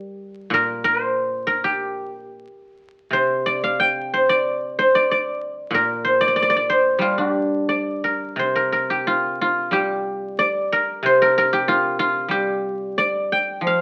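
Chinese traditional solo plucked strings in a contemplative, elegant vein: a fingerpicked acoustic guzheng, up front and silvery with a ringing tone, plays alone in the G yu mode at a rubato 86-97 BPM in 2/4, moving into a new section at 8.4 seconds within this 13.8-second cut from a longer piece, heard through moderate studio reverb on a very old 78 rpm record carrying vinyl crackle.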